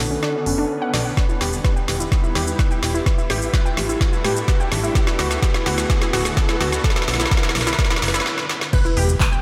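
In straight 4/4 time, this expansive, dreamy progressive house build-up pairs a deep house kit of woody snare, smooth hats, claps, shaker and crash with a punchy, funky analog bass and a shimmering, ethereal pad whose chords sweep through a filter and pump against the sidechain, while a crystalline wavetable pluck spins filter-swept arpeggios through tape echo alongside a mellow, round, octave-layered lead with vibrato and phaser. A deep, up-front electronic kick joins at 1.2 seconds, a background riser climbs until a stop at 8.3 seconds, and a nasal second pluck line surfaces with the impact at 8.7 seconds, the whole mix soaked in a lush hall reverb.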